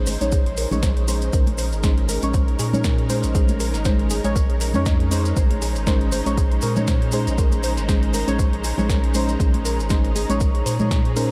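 A deep house groove at 119 BPM in 4/4 with a light 16th-note swing anchors this late-night, hypnotic excerpt in Bb minor, which holds a single Bbm11 chord throughout. An overdriven deep house kit of hi-hat and punchy snare enters at 0.1 seconds, and an overdriven electronic kick follows up front from 0.3 seconds. In the background, soft-handed congas add close, dry percussion alongside grainy, saturated maracas. A round, dark analog bass carries the low end, and deep, mellow chord stabs with a filter sweep, analog chorus and delay ride over it, all pumping against the kick. Behind them, a silky vintage string machine holds sustained chords with an ensemble chorus, an airy, breathy pad with a moving notch adds texture high up, and a soft, full-bodied pluck spins delayed, chorused arpeggios in the background. The whole mix sits in a light reverb, giving the layered synths a soft, enveloping glow.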